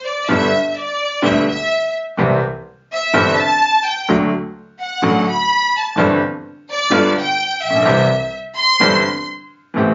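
Captured on a phone in a club, the sound is dulled at the top and carries the murmur of the room and a moderate reverb. In this sultry, dramatic tango in C major at 127 BPM with a rubato feel, a clear, focused violin section opens alone at 0.0 seconds, bowed with vibrato up front. From 0.3 seconds a brilliant, woody upright piano with audible action noise and long sustain joins it, with a single biting, intense bowed double bass in the background, moving through G, C, D and G7 before settling on C.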